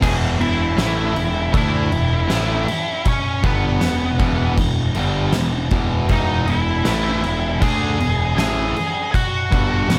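A dry, saturated mix opens this anthemic, restless quiet-loud alternative rock excerpt at 79 BPM in straight 4/4 on E, where an up-front, dark octave-fuzz lead guitar carries the melody over a bright overdriven electric guitar riff in the background, a very quiet thick fuzz guitar playing its own riff, a growly fuzz picked bass, and an oversized low-tuned acoustic drum kit with punchy kick, fat snare and dark crash cymbals pumping in a bright stone room.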